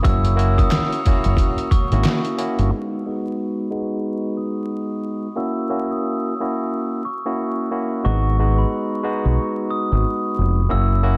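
This boom-bap hip-hop fragment, cut from a longer piece, moves at 90 BPM in G# minor with a swung sixteenth-note feel and a moody, shadowy atmosphere. A bright, barky tine electric piano carries the accompaniment up front throughout, trading between F#7 and G#m7 chords. Above it, a softly struck glockenspiel with rubber mallets plays a mellow, bell-like melody, close and full, trailed by a diffuse ambient delay. A jazz-style saxophone section adds tight stabs with light vibrato from the background until 2.3 seconds. The gritty, pitched-down sampler-style drum kit, with a thumpy kick, handclaps, hi-hat and snare, stops at 2.7 seconds alongside the round fingered electric bass, which returns at 8.1 seconds while a filter sweep runs through the rest. The whole mix is dreamy and soaked in lush hall reverb, with vinyl crackle underneath.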